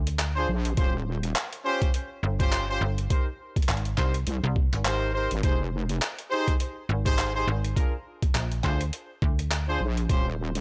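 A dry, gritty hardware recording with little reverb frames this playful, swaggering glitch hop cut at 103 BPM, swung on the sixteenths and moving through jazzy chords from Bb7 and Eb13 to Abmaj9 and Fm9. A snappy, metallic FM slap bass sits up front beside a compressed, thumpy electronic kick and a sampler-style boom bap kit of handclaps and hi-hat, both re-recorded in a large room. A bright, close-miked jazz horn section fires stabs through sidechain pumping and analog delay, while a heavy, saturated wobble bass with chorus churns up front, dropping out at 6.0 seconds and returning at 9.8 seconds.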